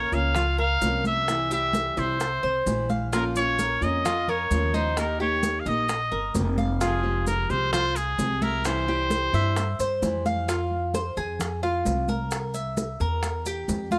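Nostalgic and sultry, this excerpt from a longer Latin piece in the Cuban son and guajira style moves at a straight 130 BPM in 4/4, set in F minor. An up-front solo trumpet carries the melody with a clear, punchy, vintage tone and scooped notes in a pop style, playing until 10.0 seconds. Beneath it, a small, fingerpicked nylon-string guitar with fresh strings supplies the accompaniment, while a picked Cuban tres adds metallic arpeggios from its double strings, some doubled at the octave. A woody, thumpy upright bass with gut strings sits up front, its dark pizzicato anchoring the harmony as chords move from Bbm through C, Eb and Fmadd9 before a closing passage on Fm and C7. Soft-handed congas with a thick, damped skin and tight, high-tuned bongos stay in the background, joined by grainy, mellow maracas in a live room, with a drum fill at 2.9 seconds, all framed by light reverb.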